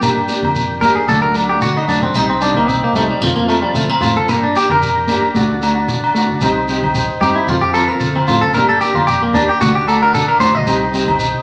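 A bright, twangy clean electric guitar sits up front and plays picked arpeggios from 0.8 seconds in this bittersweet G minor highlife excerpt at 113 BPM with swung sixteenths, cycling through Gm, D, Cm and F over a dark, compressed electric guitar accompaniment with spring reverb, round tonewheel organ chords with key click and slow rotary speaker in the background, a growly fingered bass, ringing agogo bells, a grainy shekere and soft-handed, low-tuned congas that enter at 0.4 seconds, all in a large studio reverb.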